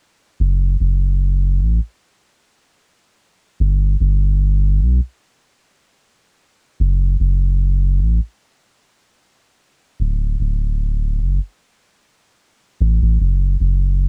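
Smoky and cinematic, this trip hop excerpt drifts in free time in F# phrygian. A lone analog bass carries the whole excerpt from 0.4 to 14.1 seconds, sitting deep between D1 and B1. Its tone is round and dark, with a triangle-and-sine purity, a fast attack and sustained notes. The bass sits up front in a dry space with little reverb. The brief fragment is a home recording on cassette.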